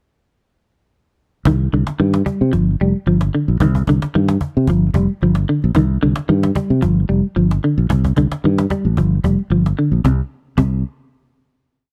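A clean, picked electric guitar ostinato with tremolo, a growly, punchy fingered bass riff and a woody cajon groove with faint snares all enter together at 1.5 seconds, setting up a defiant, intense afrobeat piece in C minor at 112 BPM with a light sixteenth-note swing. The up-front guitar arpeggios and syncopated bass alternate between Cmadd9 and G7 over the close, dry, 1970s-style small-room sound. The groove holds until 10.0 seconds, when the parts fall away into a final chord.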